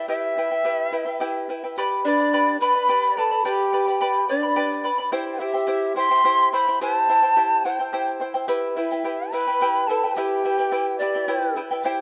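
Andean folk in E minor, this festive yet melancholic 6/8 passage at 72 BPM moves from Em through G and C back to Em and is cut from a longer piece. An airy wooden quena with vibrato and a soft attack carries the melody up front beside a shimmering, fingerpicked charango with doubled strings. A grainy, compressed tube shaker joins at 1.8 s and breathy cane pan pipes with tongued chiff add a second line from 2.0 s, all set in a moderate plate reverb that lends the ensemble a spacious glow.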